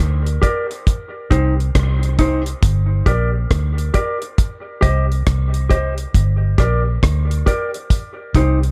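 Hypnotic and spacious, this short dub reggae passage cut from a longer piece swings lazily in 4/4 over a slow alternation of G minor and C minor chords. A round, foam-muted vintage electric bass sits up front from the start, joined at 0.3 seconds by a dry, deep reggae kit with a tight kick, hi-hat and rim click. Just after, a mellow, clean electric guitar, dark and compressed, floats lower in the mix through a dub echo, all of it set in a studio reverb.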